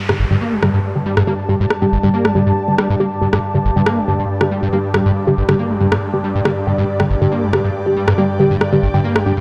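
Over a straight, driving 4/4 pulse, this relentless, dark peak-time techno excerpt pairs an overdriven, up-front electronic rim click with a squelchy, gritty acid bass riff run through distortion, chorus, 12-bit grit and delay, while muted dub chord stabs with phaser and delay, a swarming, tense drone, an ethereal airy pad entering at 0.5 seconds, and a brief electronic downlifter ending by 2.4 seconds fill the space under a moderate plate reverb.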